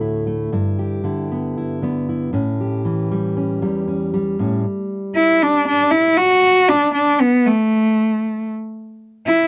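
A bowed cello, nasal and boxy with light vibrato, carries a nostalgic, uplifting folk melody up front from 5.2 seconds, following a dark, full-bodied fingerpicked steel-string acoustic guitar with audible finger squeak that plays Dadd9, G6 and A7 chords at 117 BPM from the start until 6.4 seconds, all captured in a dry, close 1970s-style studio sound in this brief cut from a longer piece.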